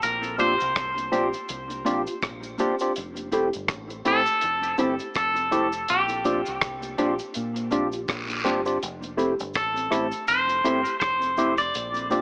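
A twangy, scooped electric guitar sings a sweet, tender lovers rock melody through tape echo over round, dark fingered dub bass, a dry reggae kit with a tight kick, hi-hat and rim click, and distant cabasa and guiro in the background, joined at 0.4 s by a barky, up-front tine electric piano through phaser and mellow, compressed electric guitar stabs with subtle chorus and tape echo, as the swung groove rocks between Bb69 and Fmaj7 under plate reverb and an AM radio tint in this short cut from a longer piece.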